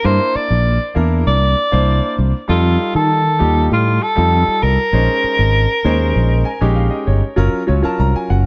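Light reverb and a small room's ambience give this short cut from a longer electric jazz fusion piece a close, intimate sound. At 98 BPM in a straight 4/4, the mood is nocturnal and funky, moving through C9, F9 and Bbm11 before shifting to Gbmaj7 at 7.4 seconds. A soprano saxophone carries the melody up front in a jazz solo style, its vintage tone marked by vibrato, a soft attack and scooped notes, until it stops at 6.8 seconds. Beneath it, a fretless electric bass sits prominently with a round, direct sound colored by ensemble chorus, while a concert grand piano accompanies with a brilliant upper register and deep bass. The piano adds a fill from 6.2 seconds, leading into the closing Gbmaj7 passage where bass and piano carry on to the end.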